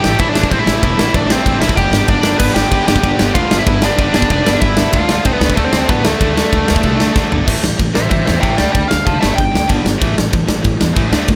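Raw and urgent, this punk rock fragment in straight 4/4 sets a smooth, overdriven lead guitar up front over two background riff guitars, one a hollow-bodied semi-hollow and the other tight and distorted, while a woody, thumpy pizzicato upright bass and a big, natural-sounding acoustic rock kit with bright cymbals, a tight kick and toms drive underneath in a dry mix, until a drum fill at 7.2 seconds launches the lead guitar solo at 7.5 seconds, with the lead dropping out at 9.7 seconds.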